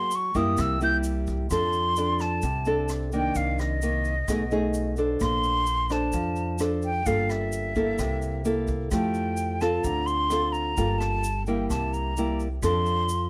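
Relaxed and breezy, this bossa nova excerpt in F major moves at 130 BPM in a straight 4/4, taken from a longer piece. A hollow, airy concert flute carries the melody up front with vibrato and tongued notes, featured in a brief solo opening during the first 1.5 seconds before the next section begins. Beside it, a small-sounding nylon-string guitar is fingerpicked up front, tracing jazzy harmony such as Gb9, Cm9, Bbmaj9 and Fmaj9 before settling on F6. A woody pizzicato upright bass with steel strings enters at 0.3 seconds, while a brushed jazz kit sits in the background with hi-hat, rim clicks and a boomy kick. A grainy, bright tube shaker sounds close, and the whole band shares a moderate studio reverb that gives the natural room a gentle glow.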